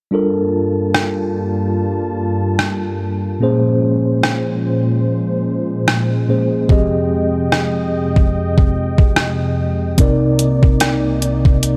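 Contemporary R&B at a slow 73 BPM in G phrygian, moody and longing, with a swung sixteenth-note feel, cut from a longer piece. A mellow, clean tine electric piano and a smooth, detuned sawtooth analog pad with chorus and a soft attack carry the chords from 0.1 seconds, moving through Gm9, Bbm9, Fm9 and Cm9. At 0.9 seconds a detuned, overdriven 8-bit drum machine that sounds re-recorded in a small room enters up front with hi-hat, rim click and a thumpy kick, all set in light digital reverb.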